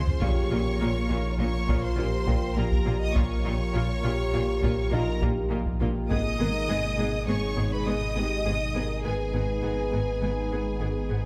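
Set in 5/4 at 102 BPM with a straight feel, this relentless, vast hybrid orchestral and electronic film cue, cut from a longer piece, opens on a taiko drum fill at 0.0 seconds, the heavy-stick drums sitting close but in the background until they stop at 7.2 seconds. A bright violin section carries the melody high above while a second, more focused violin section plays a second line beneath it, both bowed with lush vibrato, supported by an intense viola section in the background. A dark, tight French horn section and an airy, breathy pad with a detuned, chorused shimmer hold sustained chords over a harmony that moves from Bbm to Abm at 6.1 seconds. Underneath, a deep, full sub bass with an octave anchors the low end alongside a distant cello section and a very quiet, clear double bass section. A felt-muted upright piano adds an intimate texture, its thick felt and audible action noise barely surfacing, and a moderate concert hall reverb gives the whole ensemble a spacious sense of depth.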